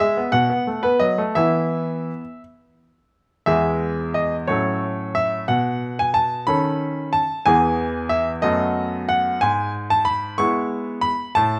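Playful and elegant, this short cut from a longer classical-period piano sonatina in 6/8 with rubato features a solo baby grand piano, brilliant and polished with a crisp, short sustain, sitting up front under close, detailed microphones in a moderate recital hall reverb, ranging from E2 to C#6 as it moves from an opening phrase into a new section at 3.5 seconds that settles back home by the end at 11.6 seconds.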